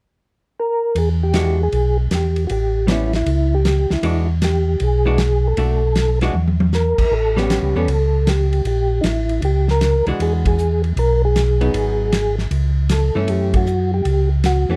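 Soul jazz organ trio in E mixolydian at 156 BPM, swinging and greasy, with a percussive, flute-like tonewheel organ carrying the melody from 0.6 seconds over a round, mellow organ bass line, both with chorus vibrato and slow rotary speaker up front. A soul drum kit with a fat snare and dark cymbals enters at 1.0 seconds, and a compressed, hollow-body archtop guitar comps from 1.3 seconds through changes like E9, A9 and A#dim. A drum fill near 6.3 seconds and band accents at 10.4 and 13.5 seconds punctuate this dark, lightly reverberant cut from a longer piece.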